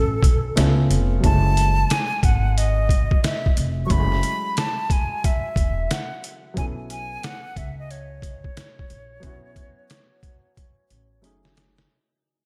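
An airy, close-miked silver flute with vibrato and analog delay carries the melody over a mellow baby grand piano, woody pizzicato upright bass and a gritty, compressed, pitched-down sampler-style drum kit with a thumpy kick that enters at 0.2 seconds, in this nocturnal, cool jazz-hop excerpt at 90 BPM in F# dorian with a swung 16th feel, light small-room reverb, a fade running throughout and a drum fill from 10.6 seconds.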